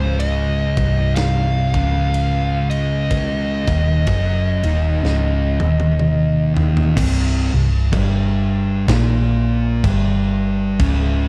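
A dark, warm production in a small room frames this brooding, heavy stoner and doom metal excerpt, crawling at 62 BPM in 4/4 with a swung eighth-note feel. Two thick fuzz guitars grind out the riff, one up front and one sitting in the background, while a hollow-body short-scale electric bass, picked and overdriven, adds a round, amped low end in the foreground. Above them, a compressed fuzz lead guitar carries a short melody through a tape echo, dropping out at 6.5 seconds. A big acoustic rock kit with a punchy kick, medium-tuned snare, rolled-off top and crash, ride and toms plays a fill from 5.0 to 7.0 seconds, at the end of which the harmony moves from C minor to a bare C power chord. From there the background guitar falls away, leaving the front fuzz guitar, bass and drums to push on until the cut.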